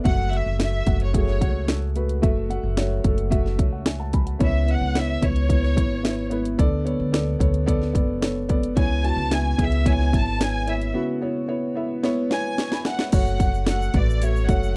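A dry, close 1970s-style studio sound frames this bittersweet, dramatic piano-driven pop excerpt in F# minor at 110 BPM, where a dark, mellow upright piano and a woody, thumpy pizzicato upright bass sit up front beneath a soft, sul tasto violin section melody touched with slapback echo, while a punchy, tape-warm house drum kit with cracking snare drives the chords from F#m7 through C#m7 and Bm7/D to a break at 10.9 seconds and a drum fill at 12.0 seconds, before a grainy tube shaker enters in the background at 13.1 seconds as the harmony settles on F#m.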